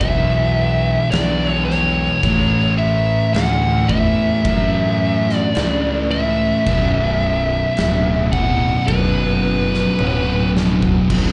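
A fuzz-drenched lead guitar sits up front in this brooding, ominous stoner and doom metal excerpt, carrying the melody between B4 and F#5 with distortion, slapback echo and delay until about 10.5 seconds. Beneath it, a round, punchy fingered electric bass, overdriven and fuzzy, holds the low end just as prominently. Two thick fuzz guitars and a double-tracked, sludgy overdriven guitar grind out the riff in the low register, one sitting in the background and the others very quiet. An oversized, low-tuned acoustic drum kit with a punchy kick, medium-tuned snare, toms and dark crash cymbals sounds saturated and gritty in a big, pumping room, and it closes with a fill from 10.0 to 11.1 seconds. The track moves at a slow 54 BPM in 4/4 in B minor, passing through E5, A and Bm chords. It is heard as a live gig through the venue's PA, with club reverb, small room ambience and a muffled top end.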